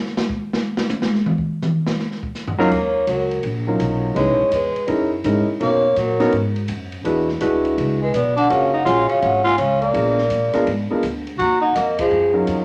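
This late-night, moody small-group jazz excerpt in Eb minor swings at 166 BPM, opening with a solo on an open drum kit whose dark cymbals, medium-tuned snare and boomy kick sit in a small-room sound. At 2.6 seconds a warm concert grand piano comes in with up-front accompaniment, and at 2.7 seconds the full band arrives as mellow soft-mallet vibraphone carries the melody, its metallic ring heard with the motor off. Beneath it a growling tenor saxophone plays a breathy, raspy second line with scooped notes, while a woody, thumpy pizzicato upright bass on gut strings anchors the low end. The harmony moves through rich ninth and thirteenth chords such as Ebm9, Gb13 and Bmaj9 before a Bb7b9 pulls back to Ebm9. A band accent lands at 11.9 seconds, and a large studio reverb wraps the ensemble in a wet, spacious glow.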